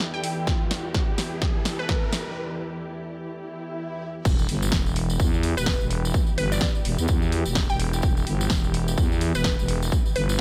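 Set in a digital-sounding ambience, this gritty, swaggering bass house excerpt opens with a dark, woody string section holding pumping chords under a blurred granular cloud pad. A glassy wavetable pluck with chorus, 12-bit sampler grit and delay carries the melody, while a house kit's punchy snare, crash and bright hats drive a fill beneath a background riser. After a brief break and swell, the drop lands at 4.3 seconds with an impact, bringing in a growling, thick FM bass with tube saturation alongside a jingly, close tambourine; a layered, tape-warm electronic kick sits up front from near the start, and the pluck returns at 5.6 seconds.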